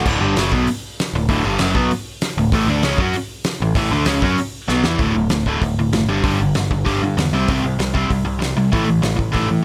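Rowdy, energetic punk rock cut from a longer piece, where a biting, double-tracked overdriven guitar riff and a growling, overdriven picked electric bass drive hard over a loose acoustic drum kit with a punchy kick, fat snare and dark cymbals in a pumping room, all under light reverb, with a drum fill at 4.7 seconds ushering in a new chord pattern at 5.0 seconds.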